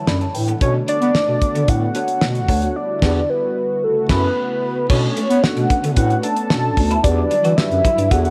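A light studio reverb surrounds this late-night, slick early-eighties boogie funk in B minor at 112 BPM, where a damped 70s drum kit with a fat snare and tight kick sits up front and a dark, soft-attack, close-miked bass clarinet carries the bass beneath a velvety, detuned synth lead with chorus and tremolo entering at 0.6 seconds, while a smooth sawtooth pad with chorus holds sustained chords and a mellow tine electric piano and a twangy, picked electric guitar with ensemble chorus stay in the background, the band hitting accents between 2.8 and 4.9 seconds as the harmony moves through Em9, Bm9 and F#m7.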